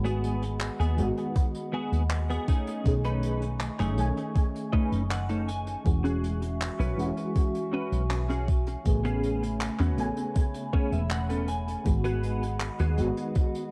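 Vaporwave at 80 BPM in 4/4 and E major, nostalgic and faded in mood, this short cut from a longer piece drifts through G#m7, B13, E69 and Amaj9 chords. A mellow FM electric piano carries the accompaniment with a soft, warbling vintage tone, treated with tremolo, ensemble chorus and tape echo. Behind it, a warbly tape-like pad holds lo-fi sustained chords with a slow attack and long release, wrapped in chorus and its own reverb. A clean, picked electric guitar plays a compressed riff coloured by analog chorus, 12-bit sampler grit and tape echo, adding fills at 4.4 and 10.4 seconds. Underneath, a woody fretless bass sits up front with a round, hollow-body sound, while an unplugged kit played with bundle sticks supplies handclaps and hi-hat and a thumpy, sampler-style electronic kick enters at 1.4 seconds, prominent in the mix. Light reverb and small room ambience give the whole piece an echo-heavy, faded feel.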